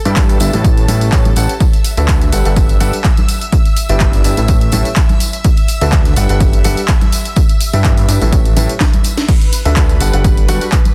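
A punchy, tape-warm electronic kick drives this uplifting, euphoric piano house excerpt at 125 BPM in 4/4, with a light 16th-note swing and an overdriven house kit of cracking snare, handclaps, hi-hat, tambourine and crash cymbal, plus a drum fill from 8.8 to 9.3 seconds. Bright, close tambourine and congas sit in the background, while a fat, detuned analog bass with tube saturation and sidechain pumping carries the low end. A clear concert grand piano plays the riff through a low-pass filter and digital delay, pumping with the sidechain, as the chords cycle through Em7, A9, D69 and Gmaj9 in D major. Shimmering vintage string-machine violins hold soft-attack chords high above, pumping with the sidechain and thickened by ensemble chorus. A breathy alto saxophone appears only briefly at 10.5 seconds on a single vibrato note, and the mix is dry, dense and heavily limited.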